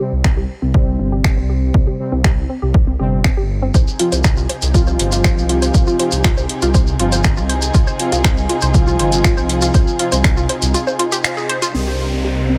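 A faint mains hum sits beneath this dark, driving melodic techno track at 120 BPM in straight 4/4, cut from a longer piece. A punchy, tape-toned electronic kick sits up front beside a deep, rumbling detuned saw bass with a beating unison edge and sidechain pumping. An analog pluck plays bright, ring-modulated arpeggios through a filter sweep, chorus, pumping and dub echo, while fat, nasal analog synth brass stabs carry the same chorus, pumping and echo. A layered techno drum kit adds finger snaps and metallic, low-passed hi-hats from a small room, and from 3.7 s a lush, woody string section holds filtered chords over Fm7 as a grainy shekere joins. A break arrives at 10.7 s with a band accent at 11.2 s, and an electronic downlifter closes the passage over Cm7.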